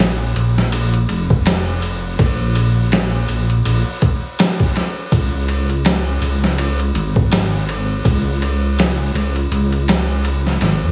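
Heavily compressed and radio-like, the recording sits in a light reverb with a studio ambience, and this short cut from a longer piece runs about 10.9 seconds. It is dark, hypnotic trip hop in Bb minor at 82 BPM in 4/4, with a 57% swing on the sixteenths and tuning set to A4 = 436 Hz. A detuned sawtooth bass in unison, blended with a sine layer, rumbles deep and up front between F1 and F2, its fast attack giving way to sustained, beating tones. A sampler-style drum kit plays kick, ride cymbal and snare, sounding pitched down and muffled, with a thumpy kick and a medium-tuned snare. The drums are overdriven with vintage 12-bit sampler grit, compressed and re-recorded in a small room, so they land close and gritty beside the bass for the whole passage.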